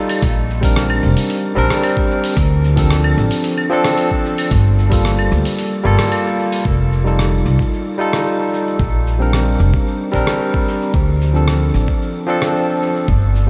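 Blissful and warm, this sunset chillout excerpt in Bb major moves at 112 BPM in a straight 4/4, with a bright, barky tine electric piano carrying delayed chords such as Bb69, Dm7, Gm9 and F9, a woody, growly pizzicato upright bass up front, a gritty, overdriven sampler-style drum kit of claves, hi-hat, rim click and shaker, and a thumpy overdriven electronic kick, all soaked in a huge ambient reverb for a dreamy haze.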